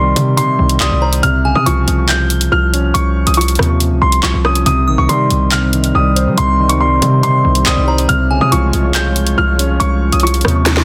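Drill hip hop at 140 BPM in a half-time feel, dark and tense, cut from a longer piece: a clear, woody upright piano carries the high melody through digital delay over a mellow baby grand piano and a punchy, up-front 808-style bass moving between Cm and Db/C, while an electronic drill kit with a sharp snare, hi-hats, rim clicks and handclaps enters at 0.2 s, a delicate, tinkling FM synth bell adds a chorused second line, a deep, detuned analog pad joins in the background at 4.7 s, and a drum fill arrives at 10.7 s, all within a dense, heavily limited master with light reverb.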